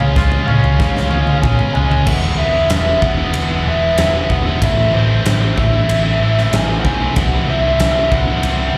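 Quiet-loud alternative rock at 94 BPM in 4/4, this anthemic, restless clip sounds like a live gig heard through a club PA, with the room's reverb hanging around the band. A dark, overdriven lead guitar through a small cranked amp carries the melody throughout, its slapback echo trailing each picked note. A clean, twangy guitar plays arpeggios in the background for the opening 2.1 seconds, coloured by slapback and digital delay, while two distorted rhythm guitars, one scooped and high-gain, the other tight and tucked back, drive the riff with their own slapback echo. An overdriven, growly picked bass punches underneath, and a huge arena drum kit sits up front with a fat snare, boomy kick and bright cymbals in a pumping room sound. A drum fill from 0.8 seconds carries the music into the second section, where the chords move from E through Am to C.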